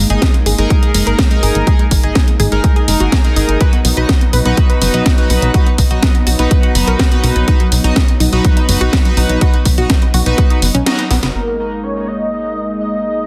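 Bittersweet and driving, this progressive house excerpt at 124 BPM in G# minor rides a punchy overdriven kick, cracking snare and hi-hats, a funky wave-folded analog bass and a smooth chorused pad under pumping pluck arpeggios and glossy polysynth stabs with dub echo, moving from G#sus2 to B before the kick drops out at 10.9 s and a thick, dark unison lead with vibrato takes the melody from 11.4 s.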